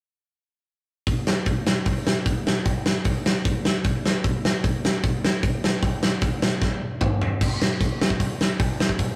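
The sound is rough, like a rehearsal-room recording with warm saturation and a light touch of reverb. This short, upbeat punk cut runs at 152 BPM in a straight 4/4, carried entirely by a big acoustic rock drum kit that enters at 1.1 seconds and sits up front. The kit has a big-room character with a mid-forward, rolled-off top. A tight kick and a medium-tuned snare drive the pulse, while hi-hat, crash cymbal and toms fill out the kit. A drum fill from 6.6 seconds leads into a new section at 7.4 seconds, and the energetic pace holds until the kit stops at 9.1 seconds.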